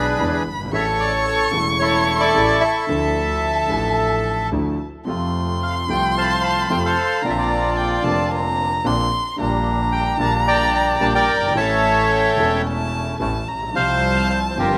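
Tango excerpt at 111 BPM in 4/4, played with a rubato feel and a tense, dramatic mood. A reedy, airy bandoneon carries the melody up front from the start, while a violin with vibrato, portamento and a smooth top adds an expressive second line. A clear concert grand piano with deep bass and a vintage tone supplies the accompaniment, and a bowed double bass, earthy and distant with light vibrato, anchors the low end. From 5.1 seconds a second, brighter bandoneon plays mid-forward stabs in the background. The harmony moves from E7 and A through Dmadd9, F, Bbadd9 and Gm/Bb before returning to A and closing on Csus4, all set in light studio reverb with a rough home-demo mix.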